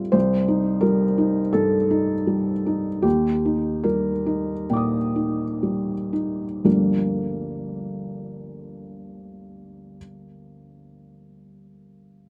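A felt-muted upright piano plays alone from the start, its soft, mellow tone sitting up front with thick felt in this reflective, intimate neoclassical minimalist piece in G minor, cut from a longer work. Moving in rubato 4/4 somewhere between 57 and 88 BPM, it slows through the opening passage over Cm and Ebmaj7 chords before settling onto Gm7 at 6.6 seconds. Light reverb colours the outdoor recording, and the piano's range reaches from G1 to Eb6.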